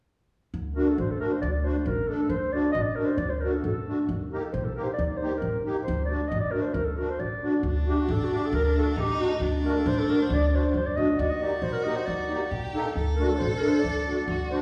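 A woody, thumpy pizzicato upright bass opens this soulful, festive klezmer excerpt at 0.5 s in a brisk 2/4 at 135 BPM, with a reedy, shimmering musette accordion joining at 0.8 s alongside an up-front, breathy clarinet whose mellow, intimate melody carries light vibrato and scooped notes. In D phrygian dominant, the harmony moves between D and Eb, and at 7.7 s a single bowed violin adds a warm, focused second line with vibrato. The players sit in a reverberant recital hall.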